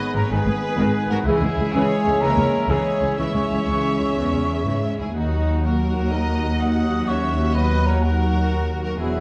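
A lush symphonic violin section carries the melody in this cinematic, heroic adventure cue, a brief cut from a longer piece in a straight 12/8 at 125 BPM, moving from G#m to C#m at 1.3 s and on to D#m at 5.2 s. Around it, a hollow, pure-toned concert flute, a background oboe, a very quiet breathy clarinet and a distant second violin section each weave their own supporting line. Mellow French horns and tight trombones hold sustained chords beneath, while a roomy trumpet section punctuates with clear stabs. Violas fill in the accompaniment, and bowed cellos and expressive double basses anchor the bass from just after the start, giving the whole an adventurous, full-bodied weight. The orchestra sits in a moderate recital hall reverb of 1.4 s with a touch of small-room ambience.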